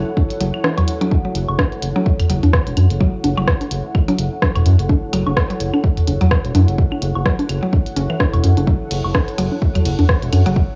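Clinical and quirky, this short excerpt of minimal techno moves at 127 BPM in 4/4 with a swung sixteenth-note feel, resting on a single F#m7 chord in F# minor. A punchy, overdriven electronic kick sits up front beside a round analog bass, deep and dark with tube saturation and sidechain pumping, both running nearly the full 10.8 seconds. Dry, tape-softened electronic bongos, claves, toms and woodblock join at 0.2 seconds, while a minimal click kit adds clicky hi-hats, ride cymbal and rim clicks that sound re-recorded in a small room. A woody, mallet-like FM pluck carries the riff from 0.4 seconds, roughened by 12-bit sampler grit and trailed by tape echo and chorus. Underneath, a moody, warbling ambient pad with a slow attack and long release drifts quietly in the background, pumping gently against the kick, and the whole piece has the character of a cassette home recording in a small room.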